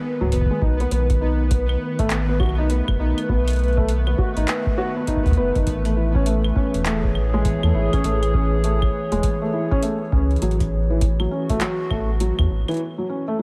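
Light digital ambience surrounds this melancholic, cerebral IDM excerpt at 101 BPM with a swung 16th-note feel, where a warbling, nostalgic lo-fi pad holds dark, chorused chords through G#m, B7, Amaj7 and F#m7/A. A bright, pulsing gated texture sits in the background, and a soft, felt-muted upright piano plays intimate arpeggios through a delay. A deep electronic kick and an analog drum machine with metallic hats, claves and handclaps keep time under a rubbery, hollow square bass up front, until the piano carries on alone from 12.8 seconds.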